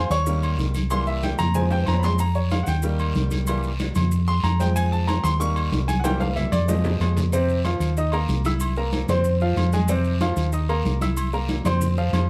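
Close, detailed and lightly reverberant, this passionate, danceable salsa excerpt in F minor moves at 187 BPM, with a brilliant, woody upright piano taking a solo up front until 7.3 seconds over a dark, round hollow-body electric bass, while ringing vintage agogo bells and timbales and raspy guiro join grainy maracas and distant thin-skinned congas that sit in the background, drum fills landing at 1.7 and 6.0 seconds as the Eb, C7 and Fm changes cycle through.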